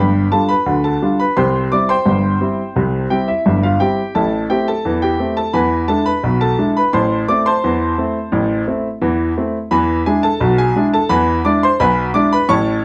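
A solo grand piano opens on a G7 chord and moves through C, A minor and E7 in this lively, cheerful ragtime excerpt at 86 BPM in a straight 2/4, its clear, present tone spanning G1 to D6 and tuned to A4 = 439 Hz, set in a short, wet studio reverb and heard from further back in the room across the full 12.8 seconds.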